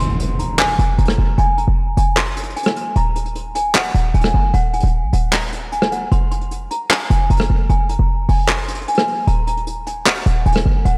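An electronic impact opens this brooding, dark trap excerpt, ending by 1.4 seconds as the other parts play on in a half-time feel. A delicate, bell-like celesta carries the high melody, its bright, sweet tone struck by hard felt hammers and softened with subtle chorus, a low-pass filter and tape echo. Underneath, a short 808-style bass sits up front, punchy and tight, a sine tone with a noise layer, a fast attack and a decaying tail. A jazz brush drum kit, also up front, sounds acoustic and smooth in a studio room, its rolled-off top giving the handclaps, hi-hat and rim clicks a dusky cast. The harmony moves between F minor and E-flat minor under light reverb, and the fragment is cut from a longer piece, the drums stopping at 10.9 seconds just before the rest.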